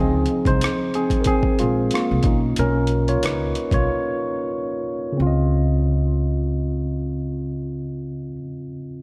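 A worn, slightly out-of-tune tine electric piano leads this smooth, sensual neo-soul R&B fragment, heard up front with a clean tone through its built-in speakers and carrying a solo over a rootless Dbmaj9 and then a Cbmaj9 chord from the start. Beneath it, a pizzicato upright bass with steel strings gives a woody, growly low end in its deep register. A boom bap sampler-style drum kit plays hi-hat, a thumpy kick and rim click, its compressed, overdriven sound gritty and placed up front as if re-recorded in a small room, with a lightly swung sixteenth-note feel. The drums stop at 3.9 seconds for a break, and the music moves into a new section at 5.2 seconds as the harmony returns to Dbmaj9. The whole fragment sits in a dreamy mix soaked in church reverb.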